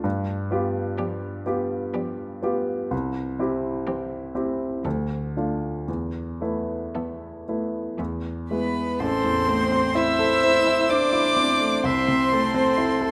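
A dark, woody violin with vibrato carries the melancholic, yearning melody of this slow, rubato classical movement for piano quintet in A minor and 3/4 at 55-66 BPM, entering at 1.0 s over a clear, up-front grand piano with audible action noise that opens alone, while a second violin and a viola play pure, floating sul tasto lines with soft attacks and an intimate cello with airy bow and light vibrato sits in the background, all in a moderate recital-hall reverb caught by close, detailed microphones.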